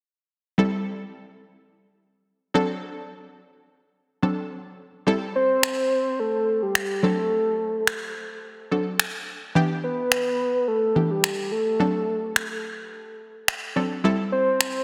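Dense and heavily limited with a lush hall reverb, this bittersweet, driving dance-pop excerpt opens on a round, chorused sawtooth analog pluck with a fast filtered attack over Am7 and D7 chords, joined at 5.4 seconds by a dark, sustained octave-layered synth lead carrying vibrato and dub echo, and at 5.6 seconds by up-front, layered electronic finger snaps with soft clipping on the snare.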